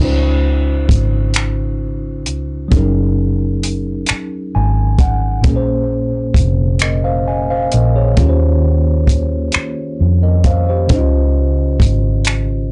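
Warm and sensual, this slow six-eight R&B excerpt in Db major moves at 44 BPM over rich chords from Dbmaj9 through Gb69, Bbm9 and Eb13, with a worn, slightly out-of-tune, lightly overdriven tine electric piano playing a brief fill at 4.1 seconds, a dark, foam-muted, round vintage fingered electric bass with transformer saturation, and a compact cocktail kit of finger snaps, hi-hat and a dry, punchy kick entering at 0.9 seconds, all set in light reverb within a blown-out, overdriven recording whose muffled top end gives it a lo-fi haze.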